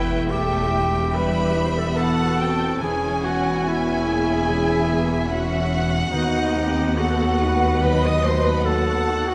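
This solemn, yearning classical passage in E minor opens at a rubato 72 BPM with a lush, vibrato-rich studio violin section carrying the melody, while a smooth symphonic violin section, a mellow, hollow small flute group and a roomy solo clarinet play second lines, a distant viola section with portamento and a ringing concert harp in quiet arpeggios fill the accompaniment, and a rich cello section and soft-attack double bass section hold the bass; a barely audible timpani sounds only until 0.7 seconds, a dark French horn section enters with sustained chords at 1.1 seconds, and the harmony moves from Em through F#7/E to B7/D# in a wet scoring-stage reverb.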